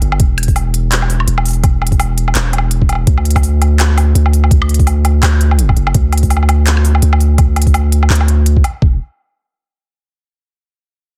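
A long, deep 808-style sine bass sits up front from the first moment, its fast attack decaying into a mellow sustain between E1 and D2, alongside an organic electronic kit of handclaps, crisp hi-hats and woodblock re-recorded in a large room. This is heavy, cinematic half-time drum and bass at 167 BPM in 4/4 with a 57% swing on the 16ths, and at 0.2 seconds a compressed, pitched-down, sampler-style kick enters with a gritty, thumpy, tape-warm punch. The dense, heavily limited master carries little reverb, and the bass holds until 9.0 seconds in this cut from a longer piece.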